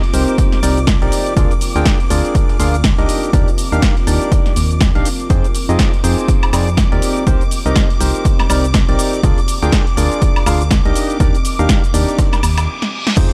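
A punchy, up-front electronic kick drives a swung 4/4 groove, joined by a tape-tinged house kit of crash, hats, shaker, snare and woodblock and a very quiet, gritty breakbeat sampler kit with a high-tuned snare, in this soulful, bittersweet piano house excerpt. A hollow, percussive organ stab plays the riff with chorus and analog delay over a dark, organ-like FM bass, while shimmering vintage string-machine violins hold bright sustained chords and a deep, moody, warbling ambient pad lingers far beneath, with sidechain pumping on the strings, stab and bass. The mix is dry and gritty with light digital ambience, and a reverse cymbal rises in the background from 12.5 s into a brief break and drum fill.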